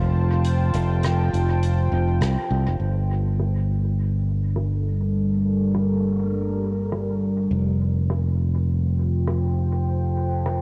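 Ambient dub at 102 BPM in G minor, meditative and spacious, cut from a longer piece and heard through a light, homespun cassette sound. A deep, moody, warbling pad with chorus and its own reverb holds sustained chords from Fadd9 to Gm7 at 2.8 seconds and F69 at 7.5, while a bright, up-front fingered electric bass anchors the low end. A soft-mallet kit enters at 0.4 seconds with a faint, filtered hi-hat and rim click set in a big room and trailed by dub echo, and the band lands an accent at 2.2 seconds.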